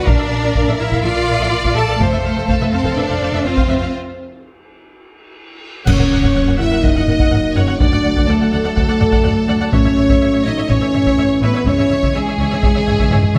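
A straight 4/4 pulse at 124 BPM drives this majestic, heroic excerpt of epic orchestral film scoring, with a close, dry taiko ensemble struck with hard sticks pounding underneath from the start. Dark, punchy French horns hold sustained chords while bowed violins carry a lush, vibrato-rich melody alongside a smooth, even second violin line. Rich violas fill in the accompaniment, expressive cellos with a soft attack anchor the bass, and a focused double bass section sits in the background beneath them. Acoustic cymbal swells, clash cymbals and concert bass drum with dark cymbals add weight from 2.0 to 6.8 seconds. After a break at 3.9 seconds and a drum fill, a band accent at 5.9 seconds opens the second section, where distant, roomy trombones join with dark sustained chords as the harmony moves from F# through D and A to C#m. A moderate scoring-stage reverb gives the orchestra a spacious, cinematic sheen.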